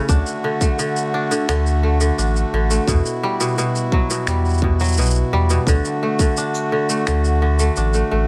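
Light reverb and a touch of studio ambience give this short folktronica excerpt an intimate, delicate feel. A bright, crisp kora sits up front, its fingerpicked arpeggios ringing through a digital delay, while a reedy, close-miked accordion holds full, dry chords underneath with a hint of vintage 12-bit sampler grit. A deep, round sine sub bass anchors the low end with sustained notes that start with a fast attack. A tight, produced electronic kick drives the straight groove until it drops out at 6.3 seconds, while a softer layer of electronic shaker and finger snaps carries on. The harmony moves from D to Emadd9 and settles back on D, keeping the mood gentle and warm.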